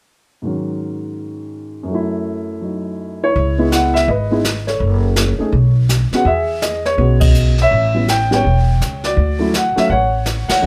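Smoky and moody, this swinging jazz piano trio excerpt in C# minor at 165 BPM opens with a dark, mellow grand piano carrying the melody alone before a woody, growly pizzicato upright bass and a brushed drum kit with dark cymbals and a boomy kick join at 3.4 seconds, the band striking accents at 7.2 and 10.4 seconds in light reverb.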